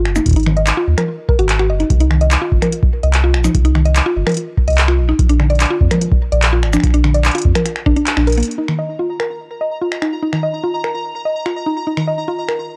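Dry and gritty, with a cassette-tape haze over a digital ambience, this melancholic, glitchy IDM excerpt moves at 146 BPM in a straight 4/4 feel in Eb dorian. A woody, mallet-like FM synth pluck plays arpeggios up front from the start until 12.5 seconds, its fast attack and short decay dressed with chorus, tape echo, a noise layer and a moving notch. Beneath it, a round sine sub bass sits up front until 8.4 seconds, and an overdriven electronic kick, deep and re-recorded in a small room, joins at 0.3 seconds. A booming analog drum machine with metallic hats, finger snaps, handclaps, shaker and toms carries overdrive of its own and stays prominent throughout. A band accent at 8.1 seconds and a drum fill just after lead into a second section, where a bright, pulsing gated texture of detuned triangle voices enters at 9.1 seconds, tempo-synced and softly blooming with chorus and reverb over the thinned-out groove.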